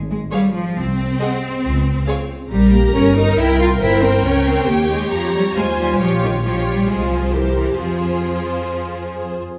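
A quick classical-period movement for string orchestra, this lively, cheerful passage is cut from a longer piece and moves in a straight 4/4 pulse. The bowed double bass and cello sections sit up front in the low register, the basses rich and expressive, the cellos smooth and even. Above them, the viola section fills in the accompaniment with an intense, vibrato-laden tone. Two violin sections carry the upper lines: the first plays the melody with a soft attack and expressive vibrato, while the second plays a focused line just beneath it. The harmony passes through diminished and half-diminished colours before settling onto a C7 and closing on F minor near 7.8 seconds, all heard within a resonant recital-hall acoustic.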